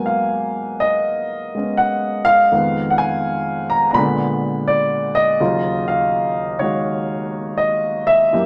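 A loose, rubato swing feel drifts through this brief stretch of solo jazz, moody and cool, cut from a longer piece. A grand piano carries everything on its own, sitting up front with an intimate, natural tone, long sustain and audible action noise, moving through minor ninth and altered dominant harmony from Abm9 to a closing Ebm9. A wet club reverb gives the room a short, close ambience.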